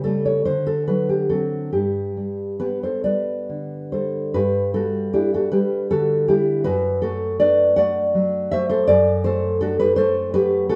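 A dark, thumb-plucked nylon-string guitar opens this short romantic solo for classical guitar, sitting up front and unfolding in a rubato 6/8 at around 45-56 beats per minute in G major, tuned slightly high to A4 = 444 Hz. The harmony moves from D7 to G, then the opening phrase returns at 4.4 s on a bare G5 before settling toward D/F# at 6.7 s. A stony room reverb surrounds the guitar, giving this warm, nostalgic fragment of a longer piece an intimate, live-in-the-room feel.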